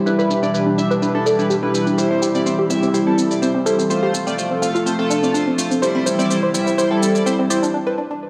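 Expansive and uplifting, this short progressive house excerpt moves at 125 BPM in C major, with an airy, breathy pad holding chorused chords while a soft, round pluck spins arpeggios through chorus, tape echo and a filter sweep. A glossy, up-front polysynth adds chorused stabs with tape echo, a layered electronic shaker sits under a low-pass filter, and a dry reggae drum kit with a high-tuned snare and hi-hat ticks very quietly beneath, all set in a wet recital-hall reverb. The chords move from G6 to C, F and back to C before the other parts drop out for a brief break at 7.7 seconds, where the pluck rings on for a moment.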